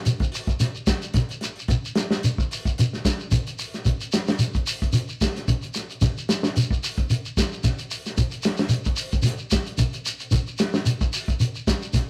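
A grainy, mellow shekere sits close and dry at the front of this funky, joyful afrobeat groove, playing from 0.1 to 12.1 seconds alongside the drums. The acoustic soul drum kit carries the beat on hi-hat, kick and snare, its dark, smooth tone marked by a medium-tuned snare and a tight kick, also placed up front with a small-room character. The tempo sits at 111 BPM in 4/4, with a 54% swing on the sixteenths that gives the pulse a gentle lilt. The whole recording has a rough rehearsal-room quality with warm saturation, and a moderate stone room reverb of about 1.3 seconds lends the space some depth. Cut from a longer piece, this passage stays in a single section for its full twelve seconds.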